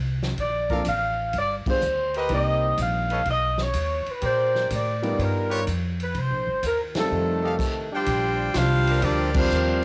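Heard through a home cassette recording with moderate spring reverb, this joyful, brassy big band swing fragment moves at 125 BPM in Bb major. A woody, thumpy pizzicato upright bass and a vintage kit with dark cymbals and a fat snare carry the swing, while a mellow saxophone section with vibrato leads over grand piano and close-miked trumpet stabs, with band accents punctuating the line before a stop at 7.6 seconds. A brilliant trumpet section then takes the melody over a clear trombone section's second line, and a saxophone section enters in the background with soft-attack sustained chords at 8.9 seconds.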